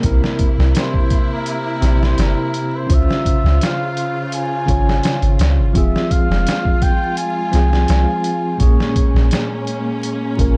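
A veiled, cup-muted trumpet carries the melody from 0.8 to 9.3 seconds, its soft, distant tone trailed by dub echo over a melancholic, hypnotic trip hop groove at 84 BPM in F harmonic minor. Beneath it, a gritty, pitched-down sampler-style drum kit with a thumpy kick sits up front beside a deep, round 808-style bass, while a bell-like tine electric piano with tremolo accompanies and a lush, bowed symphonic string section holds chords moving from C7 through Dbmaj7 and Fm to Bbm7. The dark production adds vinyl crackle and digital ambience to this short cut from a longer piece.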